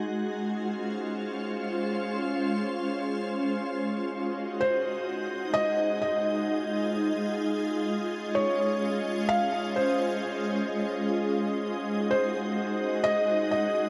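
Hip hop in free time and D-flat major, this short excerpt from a longer piece feels floating and blissful, drifting on a huge, dreamy reverb that soaks the whole mix. A shimmering ambient pad carries sustained chords from the start, its detuned, sine-like tone evolving with a slow attack, long release, octave-up sparkle and granular texture, treated with chorus and its own reverb and sitting bright and up front. The harmony moves between Dbmaj7 and Ab7, settling back on Dbmaj7 at 7.4 seconds before returning to Ab7. At 4.6 seconds a felt-muted upright piano enters with a gentle melody, mellow and intimate, with audible action noise and a thin felt character, sent through an analog delay. The pairing of the shimmering pad and the hushed piano inside that vast reverb gives the recording an ethereal, weightless glow.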